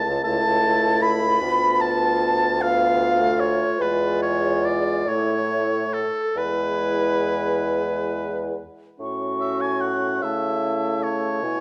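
Classical chamber music for wind quintet, this slow romantic movement in A major unfolds in 6/8 at 45-52 BPM, with a rubato feel and a serene, warm mood. The airy, hollow concert flute carries the melody from a place in the background, its tongued notes shaded with vibrato, while the oboe sits up front on a second line, its tone touched with light vibrato. Beneath them, a clear, distant French horn and a warm clarinet fill out the accompaniment, and a roomy bassoon with light vibrato anchors the bass. All five play throughout this passage cut from a longer piece, moving through harmonies from A/C# and Bm7b5/D toward E and back to A, with a new section arriving at 9.0 seconds. The sound is set in a moderate recital hall reverb and colored by worn, warbling old cassette tape with audible pitch drift.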